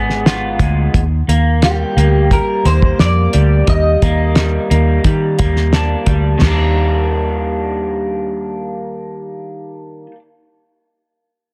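A straight 4/4 groove at 88 BPM carries this hazy, sunny bedroom-pop fragment in Eb major, with a dry, cloth-damped drum kit of fat snare, tight kick and dark cymbals thudding up front until 6.6 seconds beside a round, foam-muted vintage bass. A lo-fi, compressed guitar through a small old amp plays picked accompaniment over Abm6 moving to Ebmaj7, its subtle chorus and warbly pitch drift adding a woozy tint. A second slightly broken-up guitar, dressed in lush chorus and slapback echo, picks a melody that ends at 5.7 seconds, all under light reverb and a dense, heavily limited master.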